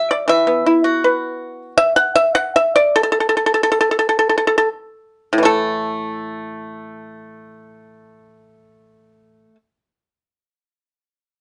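A solo pipa, plucked with fingerpicks and set up front with a dry, percussive bite, carries this serene, flowing excerpt of traditional Chinese music in the A zhi mode, moving in a free rubato 2/4 between 50 and 81 BPM and slowing from 1.8 to 5.5 seconds before a new passage begins, all within a small room's moderate reverb and a dark production.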